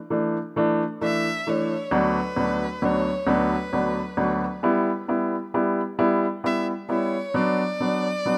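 A clear, up-front baby grand piano opens this tender, swaying pop excerpt in a lilting 6/8, soon joined at 1.0 seconds by a single close, bowed violin carrying the melody with vibrato and expressive portamento over chords moving from Dsus2 through Bm/D and Em to Bm, all in a rough home-demo mix with light reverb.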